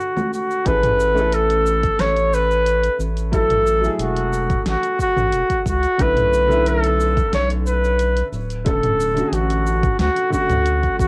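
A warm flugelhorn carries the melody from the first moment, sounding distant and roomy yet placed up front, its classical-style solo line echoed by an analog delay. Beneath it, a dark, worn baby grand piano plays boxy, short-sustained chords with audible action noise, while a deep house kit of cabasa, hi-hat, fat snare and toms ticks along quietly. At 0.7 s a round analog bass with a fast attack and sustained, evolving tone arrives alongside a deep electronic kick, and both settle into the straight 4/4 groove at 90 BPM. The harmony moves through Amaj7, F#m9 and Bm11 before returning to Dmaj7 at 8.3 s, keeping the A major mood blissful and unhurried. A cassette-tape sheen and moderate studio reverb give this sunset chillout passage, cut from a longer piece, an intimate home-recorded character.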